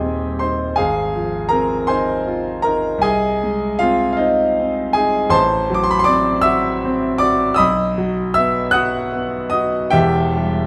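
A romantic classical nocturne for solo piano, yearning and wistful, unfolding slowly at 52 BPM in 6/8 with uneven beats and free rubato. A concert grand sits up front, its tone clear and natural with deep bass, spanning Eb1 to F#6 as the harmony drifts from Cm/Eb through Ab6, Ab/C and F#dim/A toward B, then settles on Em at 9.9 seconds. Close, detailed microphones capture the instrument in a moderate recital hall reverb, and this short passage is cut from a longer piece.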